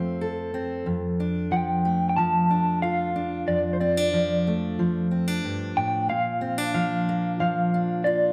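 A fingerpicked steel-string acoustic guitar opens this folk piece, its full-bodied dreadnought tone sitting up front as it lays down the accompaniment in a straight 4/4 at 92 BPM. At 1.5 seconds an electric guitar played through a small old amp enters with the melody, its picked notes slightly broken-up and lo-fi, coloured by tremolo and a slapback echo. Both guitars sit close and prominent, and the harmony moves from F to Dm/F before settling on Bb at 6.1 seconds. A moderate concert hall reverb blended with a small room ambience gives the pair an open, anthemic glow while keeping a warm intimacy. Tuned slightly above standard pitch, the passage is cut from a longer piece and runs about 8.3 seconds.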